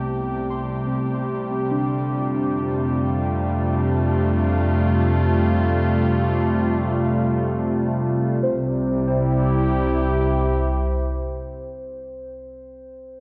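Ambient music, peaceful and warm, cut from a longer piece and unfolding in free time. A smooth, detuned analog pad carries sustained chords up front with a subtle chorus, while muted, felt-like synth keys spin intimate arpeggios above it through chorus and tape echo. Beneath them, a deep, rumbling drone holds the bass with an ominous, vintage character and its own built-in reverb. All three parts fade in together over the first 8.4 seconds as the harmony moves from Cmaj7 to Fadd9 before settling on a plain C chord. A wet spring reverb and an echo-heavy mix lend the sound a spacious haze, and the drone drops away at 10.9 seconds, followed by the pad at 12.1.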